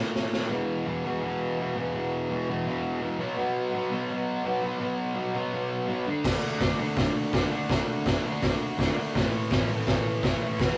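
A straight 4/4 pulse at 166 BPM drives this gritty, menacing garage rock excerpt, which opens with a brief drum fill beneath a bright, fuzz-drenched, double-tracked electric guitar riff spanning E2 to D4 that carries the piece through power-chord shifts from E5 to B5, D5 and A5. The raw acoustic kit of crash, hi-hat, boomy kick and medium-tuned snare sounds saturated and mid-forward with a rolled-off top, dropping out after the opening fill and returning at 6.2 s. A rough rehearsal-room cassette recording with a short, wet reverb keeps guitar and drums up front, capped at 11.0 kHz.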